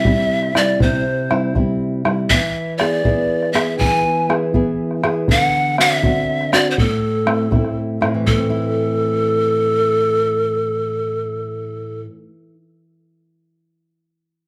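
A breathy bamboo pan flute with a chiffy, crisp attack and unsteady vibrato leads a wistful Andean folk fragment in A minor at 80 BPM in a straight 6/8, its melody up front with slapback echo and plate reverb over fingerpicked, full-bodied nylon-string guitar and a deep, dark, band-limited bombo that stops at 8.5 seconds, all set in a small room, with the guitar ringing on alone after the flute ends at 12.0 seconds.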